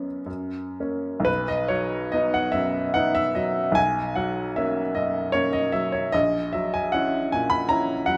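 A gently rubato 3/4 lilt, drifting between 56 and 80 BPM, carries this brief fragment of a tender, nostalgic romantic nocturne in B major for solo piano. The upright piano sounds woody and intimate, sitting up front with its action noise audible, and it ranges from A#1 up to B5, moving through F#, B, F#/B and an F#7/A# near 6.1 seconds. Close, detailed miking captures the instrument within a moderate recital-hall reverb.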